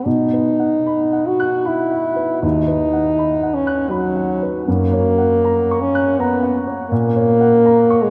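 In a lilting triple metre with a flexible, rubato pulse, this brief romantic classical passage for French horn and baby grand piano carries a melancholic, elegiac mood. The French horn sings the melody from start to finish in its lower-middle register, its tone warm yet distant and roomy, sitting up front as the clear solo voice. The baby grand piano accompanies across a broad span of the keyboard, its sound natural with a short sustain, also placed up front but a step beneath the horn. The harmony moves gently from B to B/D#, then to F# and F#/A#, giving the phrase a searching, unresolved quality. A long, wet cathedral reverb places the duo in a vast, echoing space, and the 8.1-second passage is cut from a longer piece.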